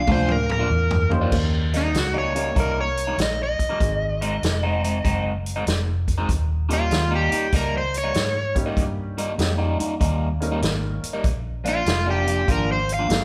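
A band playing live in one room fills a large studio with moderate reverb, giving this cut from a longer electric blues shuffle a gritty, rollicking mood and a swung 4/4 feel. Up front, an overdriven slide guitar played with fingerpicks carries the melody through a slapback echo, opening with a short solo over a drum fill in the first 1.3 seconds. A vintage kit with a punchy kick, medium-tuned snare, dark cymbals, hi-hat and toms sits forward in a natural room sound, while a foam-muted fingered electric bass adds a round, amped low end. An electric guitar through a small old amp plays a slightly broken-up riff colored by phaser. From 1.1 seconds a woody, slightly detuned upright piano with short sustain accompanies in the background as the changes move through Eb7, Ab7 and Bb7.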